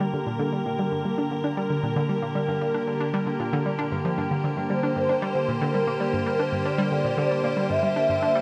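An evolving, morphing wavetable pad holds bright sustained chords up front over a detuned, ring-modulated analog pluck riff with a filter sweep and tape echo, opening this mysterious, cosmic fragment of sequencer-driven ambient space music at 115 BPM in G dorian, before a smooth, nasal synth lead with vibrato enters at 4.6 seconds to carry the melody, all bathed in a huge, wet reverb.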